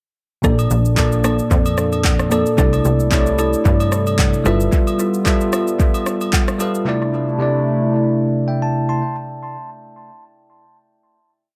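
A bright, bell-like tine electric piano sits up front in this relaxed, soulful amapiano piece at 112 BPM in C major, pushing spread chords through Bbmaj7, C69 and G13 with grace notes, short fills and analog delay. Beneath it, a deep house drum kit with a deep kick, steady shaker, syncopated rim and handclaps carries the swung groove. A punchy, funky analog bass plays a dotted figure, and woody mallet-like synth stabs sit in the background; both stop at 4.7 s, while faint agogo bells and woodblock tap out a timeline, and a hollow, flute-like pad holds sustained chords with chorus and sidechain pumping until 9.0 s, set in an echo-heavy mix with light reverb.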